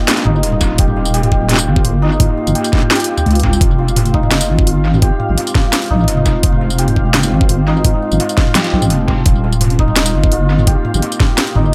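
A shimmering, ringing santur spins arpeggios through tape echo across this cinematic, tense half-time drum and bass excerpt, set over a moody, detuned ambient pad whose sustained chords carry chorus, reverb, 12-bit sampler grit and sidechain pumping in the background. Up front, a layered kit of cracking snare, bright hats, tambourine and toms, itself driven hard and sent through dub echo, enters at 0.1 seconds; a deep, wobbling bass with chorus follows at 0.3 seconds, and an overdriven, knocking electronic kick joins at 0.6 seconds. The chords move from Ebadd9 to Fm and back in an echo-heavy mix with light reverb.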